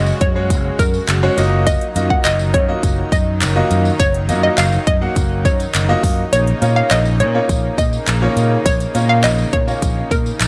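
A straight 4/4 pulse at 103 BPM drives this euphoric, summery dance-pop excerpt, where a punchy electronic kit of kick, metallic hi-hat and handclaps, joined by a jingly tambourine in the background, supports an amped fingered electric bass up front, a brilliant grand piano, airy detuned supersaw chords and a hollow, bouncy square-wave pluck melody coloured by chorus and analog delay, with the bass, piano and supersaw pumping to the sidechain over F#sus2, D#madd9/F# and A#m chords and the kick dropping out from 6.3 to 7.5 seconds, all in a dry, gritty mix with light reverb.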